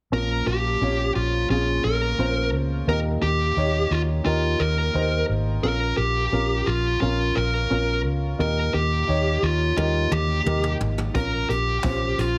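Dramatic and driving, this short piano-driven pop passage, cut from a longer piece, moves at a steady, straight pulse through a brooding cycle of Bbm and Eb chords. An overdriven electric lead guitar, dark and up front, carries the melody in a narrow middle range, its picked tone smooth. Beneath it, a woody upright piano with a vintage character supplies the accompaniment, while a foam-muted fingered electric bass, round and amped, anchors the low end just as prominently as the guitar. A jazz kit played with brushes arrives only at 9.8 seconds, bringing handclaps, hi-hat, boomy kick, medium-tuned snare and toms, and opens with a fill that runs to 11.2 seconds before the return to Bbm. The whole mix sits in a small, lightly reverberant room but is squeezed into a heavily compressed, radio-like sound.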